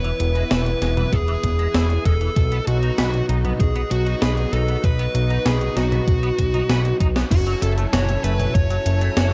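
A fat, saturated analog bass sits up front in this nostalgic, driving synthwave excerpt at 97 BPM, its detuned sawtooth tone pumping against an electronic kick that thumps in from 1.1 seconds. A dark, overdriven lead guitar carries the picked melody with delay, while a lush, detuned unison pad holds sustained chords over a bright, clean, scooped electric guitar riff in the background. A gated 80s drum machine with a gated-reverb snare, cabasa, hi-hat, crash and toms plays a fill at 6.7 seconds, leading into a brief new section as the harmony moves from E and B to F#m7.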